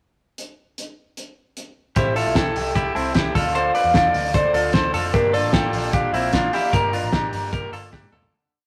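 A driving 151 BPM straight 4/4 pulse from a cloth-damped, thuddy drum kit with a fat snare and off-beat open hats opens this breezy, youthful jangly indie pop piece, and at 2.0 seconds a muted, round picked bass, a twangy direct clean guitar ringing arpeggios doubled in thirds through spring reverb, a background overdriven garage guitar strumming barre chords, and a soft octave-layered synth lead singing hook phrases with chorus and vibrato join over Am7, Dm7 and Gm7 in a rough, saturated stone-room sound, before a fade from 6.7 seconds and a closing drum fill.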